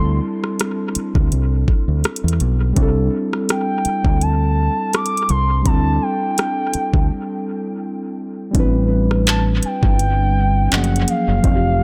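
A dry, echo-heavy mix carries a moody, sensual contemporary R&B groove at 83 BPM, with a light swing on the sixteenths, cut from a longer piece. A smooth, detuned sine lead glides with portamento and vibrato through chorus and dub echo over muted, felt-like synth keys that are soft and intimate. Beneath them, a deep, round fingered electric bass sits up front, and an electronic drum kit with knocking kick, metallic hats, handclaps and rim clicks enters at 0.4 s. A break arrives at 7.1 s, and the groove moves under chords from D9sus4 and C69 to Am11 and F#maj7 at 10.7 s.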